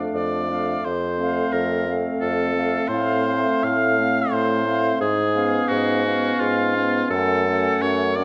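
Elegiac and yearning, this slow romantic wind quintet movement in 3/4 at 86 BPM unfolds with rubato, as a pure, distant silver flute carries the melody with vibrato and a crisp attack, a clear, up-front oboe enters at 0.2 seconds with a second line, a warm clarinet in the background and a mellow, roomy, distant French horn accompany, and a bassoon with a smooth top anchors the bass, all set in a wet recital hall reverb in this excerpt cut from a longer piece.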